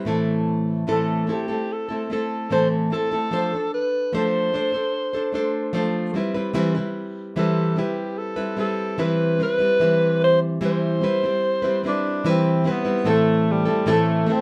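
Pop with a sunny, carefree mood, this short cut from a longer piece moves at an easygoing, straight pace in 4/4. A bright, fingerpicked nylon-string guitar opens the track and carries the accompaniment throughout, its fresh strings giving a classical flavor, with an audible finger squeak. At 0.9 seconds a breathy alto saxophone enters up front as the solo melody, mellow with a light vibrato, a punchy attack and a smooth top in a pop style. The harmony moves from Am to F6 to Cmaj7 before returning to Am at 13.1 seconds, where a new section begins. The performance sits in a wet studio reverb that adds gentle space around it.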